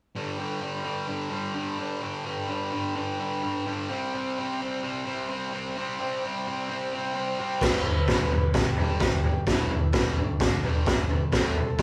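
A bright, double-tracked fuzz guitar opens this raw, rowdy garage rock excerpt alone at 129 BPM in G major, picking a distorted riff over G5 and C5. At 7.6 seconds a boomy, gritty drum kit crashes in up front with a high-tuned snare, toms and cymbal, and two overdriven vintage combo organs join in the background: one plays a reedy melody with light vibrato, and the other holds buzzy, very quiet chords as the harmony moves between G and C. The band sounds as if it's playing live in one room, with light reverb and studio ambience.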